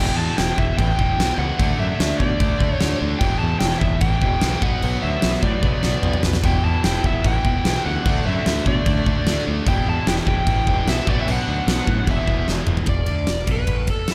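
Hard rock at 149 BPM in E minor, heavy and driving, cut from a longer piece. A biting, overdriven lead guitar carries the melody with a slapback echo, riding over a wall of picked rhythm guitars: two distorted electric guitars, one compressed and one double-tracked and very quiet, plus an overdriven semi-hollow guitar with a phaser sitting in the background. A growling fingered bass, overdriven and bright, anchors the low end, while a huge arena drum kit sits up front with a fat snare, punchy kick and crash, ride and toms, entering at 0.4 seconds. The chords move through Em, D5 and Bm, with drum fills marking the turnarounds, and a quiet, high-gain second lead guitar with a warm tone slips in at 6.4 seconds. After an E5 chord at 12.1 seconds, the two distorted guitars drop out at 12.9 seconds and the lead guitar breaks into a brief solo, all set in a light small-room reverb.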